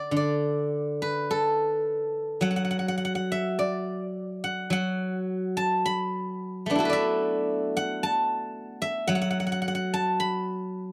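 A dry, close 1970s-style studio sound with light reverb places a solo steel-string zither up front, its bright, silvery tone ringing out under fingerpicks. This elegant, flowing piece of Chinese traditional music for solo plucked strings unfolds in rubato at a slow 54 BPM in 4/4, set in the D gong mode. The zither carries the whole 10.9-second fragment, which is cut from a longer piece.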